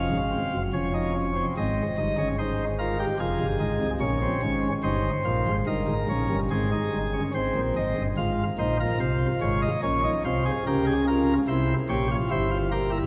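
A chamber organ on a full principal chorus carries this short, solemn passage alone, its pipes speaking with a crisp chiff and sitting up front in the sound. The music is a baroque-style three-part fugue in a steady, straight four-beat metre, with the voices spread from deep pedal-range lows to bright upper lines. The opening stays in a major key, moving through Db, Ab and Eb7 harmonies, before the music turns darker at 8.2 seconds, shifting to F minor and passing through Bbm toward a tense C7. The chamber voicing keeps the chorus clear and focused even as a long, wet cathedral reverb blooms around it. Cut from a longer piece, the fragment ends at 13.1 seconds, leaving a serious, solemn atmosphere hanging in the resonant space.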